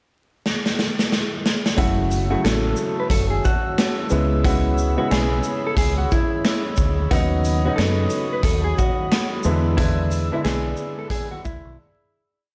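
Tough and gritty, this short boom-bap hip-hop piece moves at 90 BPM in F# minor with a swung sixteenth-note feel. A raw garage drum kit opens with a fill at 0.4 seconds, then settles into a sparse beat of quarter-note hi-hats, punchy kick, layered medium-tuned snare and shaker, sounding saturated and up front in a bright, pumping stone room with a rolled-off top. At 1.8 seconds the hook arrives: a deep dub fingered electric bass plays a round, looped line with chromatic approach notes, while a woody upright piano with audible action noise and cassette tape colour chops dark chords like a sampled loop. A clean, compressed electric guitar repeats a short fingered melody over it, and a detuned analog pad with chorus and a slow attack adds moody sustained chords from 2.2 seconds. Finger snaps mark the backbeat close and dry in the background, all over a bed of vinyl crackle and light reverb, as the harmony moves from F#m7 through C#m7 and Badd9/D# to E7. 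The track fades out from 9.8 seconds, ending on a brief break where only the pad lingers.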